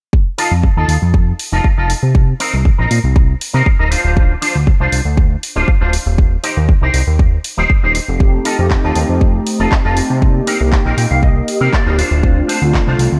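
Lightly reverberant with a digital ambience, this feel-good, groovy nu-disco excerpt at 119 BPM in F mixolydian rides a punchy, up-front electronic kick and a house kit of handclaps and bright hats, a fat analog bass of sawtooth and square waves with a moving notch, and a dark, picked electric guitar riff through an envelope filter with ensemble chorus and analog delay. Round, detuned synth brass with phaser, vibrato and sidechain pumping joins at 8.2 seconds, and a clean electric guitar fill arrives at 10.7 seconds, while the chords cycle through F7, Cm7, Dm7 and Eb6.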